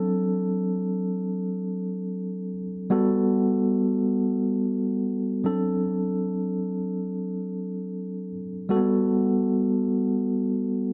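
Warm and romantic, this soul excerpt in free time and G major features a solo tine electric piano, clean and up front through its built-in speakers, moving between D7 and Gmaj9 across 10.9 seconds within a moderate plate reverb.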